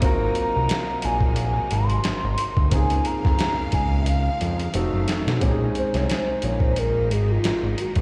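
R&B and neo-soul at 89 BPM in Bb minor, this smooth, late-night cut from a longer piece sits on a gritty, pitched-down boom bap kit with a thumpy kick, a fat, detuned analog bass up front, an intimate grand piano with audible action noise and slapback echo, and lush, bowed studio strings holding sustained chords over Ab13, Db6 and F7b9 changes. A hollow, woody clarinet-like synth lead with vibrato, chorus and tape echo carries the melody from 0.4 seconds. After a drum fill at 4.1 seconds, it turns to a soft solo over Bbm11 at 5.4 seconds, all heard as a live gig through the venue's PA with recital-hall reverb.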